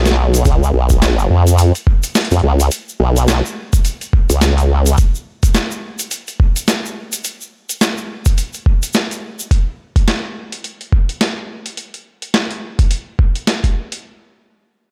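A swaggering, funky glitch hop fragment at 106 BPM in 4/4, swung on the sixteenths, where a wobbling, sawtooth-edged formant-sweep bass with chorus and tube saturation sits up front for the first 5.0 seconds before dropping out. A gritty, pitched-down sampler-style kit carries the groove to the end, with a thumpy electronic kick and a high-tuned snare and hi-hat, both compressed and re-recorded in a large room. A grainy, bright egg shaker in a small room adds texture until 9.5 seconds, all within a digital ambience.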